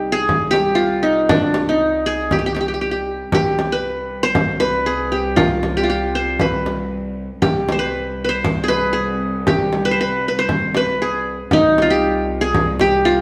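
Arabic maqam ensemble music in C maqam nahawand at 117 BPM in a straight 4/4, soulful and longing, where an up-front qanun plucked with fingerpicks carries a mellow yet bright-edged melody between D4 and C5 over a lush, bowed symphonic cello section holding a focused C2 drone with vibrato, while a deep frame drum, close and dry, plays from 0.3 to 12.9 seconds, all captured live together in one room with a stone-room reverb in this 13.2-second cut from a longer piece.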